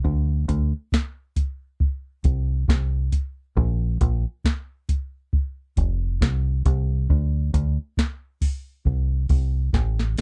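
A lightly swung 4/4 groove gives this spacious, hazy dub reggae excerpt its lilt, as a soft vintage analog rhythm box with a deep kick, crisp snare and metallic hi-hats sits up front beside a dark, round, punchy foam-muted fingered electric bass in a dry, close 1970s-style studio sound, until a brief drum fill at 9.7 seconds.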